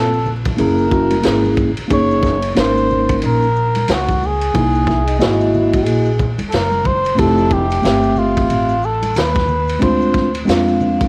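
A cup-muted trumpet with a veiled, breathy tone and light vibrato carries the melody up front from the start, over a mellow tine electric piano and a woody, thumpy pizzicato upright bass in this nocturnal, swung jazz-hop excerpt. A gritty, saturated breakbeat kit with a tight kick and rolled-off top joins at 0.5 seconds, under cassette tape coloring, while ringing maracas and congas sit in the background. A whispered, cup-muted trombone with scooped notes adds a brief second line at 4.9 seconds, all in a small, lightly reverberant room with vinyl crackle.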